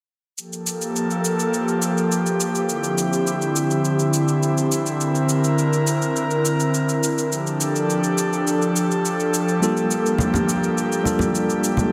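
Bathed in a lush scoring-stage reverb, this short fragment of wistful, relaxed sunset chillout opens on a breathy, chorused pad holding soft, slow-blooming chords through Gm9, Dm11, C9 and F69 before returning to Gm9, with a tape-warm electronic cabasa ticking along in a small room beneath it. At 9.6 seconds a clean tine electric piano enters with a tape echo, and ringing, hard-handed acoustic congas join at 10.2 seconds.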